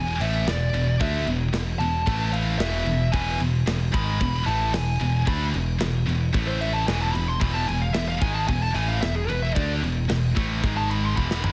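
Heavy metal in E major at 112 BPM, relentless and heavy, this excerpt is built around a dark, distorted lead guitar solo with digital delay that runs throughout, riding over two high-gain rhythm guitars playing riffs, one bright and one scooped and set in the background. A growly, direct picked bass sits up front, while a tight metal drum kit with bright cymbals, a medium-tuned snare and a tight kick comes in at 0.2 seconds and closes with a fill at 11.2 seconds. The chords move between E5, A5, E and G#5, and the dense, heavily limited modern master carries a studio reverb.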